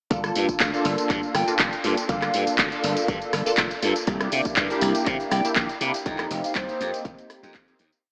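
A four-on-the-floor electronic kick drives this filtered disco house piece at 121 BPM in 4/4 with a straight feel and a nostalgic, groovy mood in G minor. The punchy, tape-touched kick sits beside an up-front house kit of programmed closed and open hats, a clap backbeat, rim and tambourine, with the hats and percussion pumping against the sidechain. A glassy, growly slap bass plays a funky syncopated line with tube saturation. A detuned sawtooth polysynth plays a rhythmic rootless chord riff through chorus and phaser, its filter pluck and moving notch shifting as it pumps over Gm9, C9 and F7sus4. From 1.3 seconds a breathy, mellow silver concert flute sits in the background with short tongued phrases, slightly unsteady and trailed by diffuse ambient delay; very quiet maracas and group handclaps enter at 4.1 seconds, and a fade-out begins at 5.4 seconds. The mix is soaked in cathedral reverb and carries an AM radio sound, giving the groove a dreamy haze.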